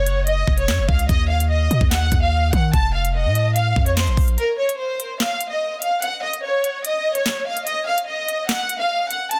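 Dense, heavily limited and set in digital ambience, this ominous half-time drill fragment pairs a lush, bowed violin section, expressive with vibrato, portamento and tape echo, with an electronic kit of knocking kick, sharp snare, crisp hats and handclaps, while a punchy, heavy sine 808 bass with a noise layer hits hard until 4.4 s, when the break leaves strings and drums to carry the menace to 9.4 s.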